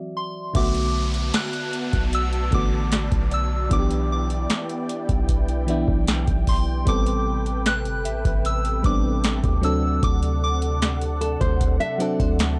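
This contemporary R&B excerpt has a moody, late-night feel, with a steady, unhurried pulse in four. A warbling, vintage FM electric piano opens the track. Within the first second a soft, pure synth bell melody treated with chorus, phaser and analog delay joins it, along with a dark, detuned sawtooth pad. A booming analog drum machine sits up front with a deep kick, crisp snare and metallic hats, while a sine-based 808-style bass adds a boomy low end and an electronic downlifter sweeps through the first half. A second, quieter bell sits in the background as texture, and the chords move from Bm7 through Em7/B and Am9 back to D7. At 11.2 seconds a full-bodied, fingerpicked nylon-string guitar enters with arpeggios and audible finger squeak, all within a dry, gritty mix that carries the grain of cassette tape.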